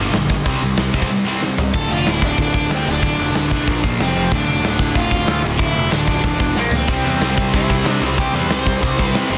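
A big rock drum kit stands out up front, its punchy kick softly clipped, a medium-tuned snare cracking and crash, hi-hat and toms ringing in a bright stone room, with fills at 1.4 and 6.6 seconds. This is an aggressive, raw punk rock excerpt in D minor at 186 BPM in a straight 4/4, cut from a longer piece. Behind the drums, a sludgy overdriven guitar and a very quiet, double-tracked, compressed fuzz guitar pound out riffs throughout, joined by a tight, bright distorted guitar that plays at the start, drops out at 1.7 seconds and returns at 6.9 seconds. A growly overdriven picked bass sits in the background, while a crunchy overdriven guitar carries the melody from 1.8 seconds, over chords moving from C to Dm through Bb5, F5 and E5 before landing back on C. The sound is dense and heavily limited, with light reverb.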